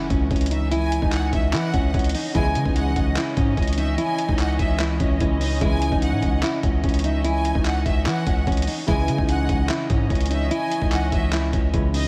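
A half-time trap groove at 147 BPM in C# minor rides on a compressed, pitched-down sampler-style drum kit with a thumpy kick, handclaps and hi-hat, under a heavy, distorted 808-style bass, while a barely audible electronic impact marks the opening of this melancholic, hard-hitting hip hop excerpt. A bright, fingerpicked nylon-string guitar carries the melody with audible finger squeak through a low-pass filter, backed by an intimate grand piano in the background with audible action noise and a dark, veiled con sordino string section holding sustained chords around a C#madd9 harmony. From 0.5 seconds a lush, expressive violin section adds a distant second line with analog delay, and a very quiet brass ensemble punctuates with short stabs beginning at 2.3 seconds, all set in light reverb and studio ambience.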